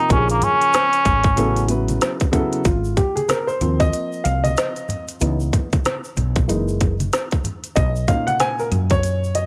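A buzzy, metal-muted trombone with slapback echo opens this smooth, cool jazz-hop excerpt at 94 BPM over a dark, woody upright piano, a round fretless bass, a tight electronic kit with crisp hats and soft background congas and tube shaker, then drops out by 1.7 seconds as the mellow piano takes a solo from 2.7 seconds over extended chords in a small, lightly reverberant room.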